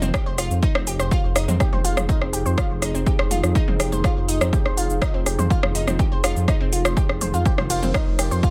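A punchy, overdriven electronic kick drives this hypnotic melodic techno passage, joined by an up-front house kit of metallic hats, ride, rim clicks, shaker and toms that sounds re-recorded in a large room. Beneath it a deep, rumbling detuned saw bass pumps against the kick, while a round analog pluck spins arpeggios through chorus and digital delay with a moving filter sweep. A moody, ring-modulated pad sits in the background holding sustained chords that move from Fm7 to Ebsus2/F near 7.5 seconds, all in a dry, driving mix.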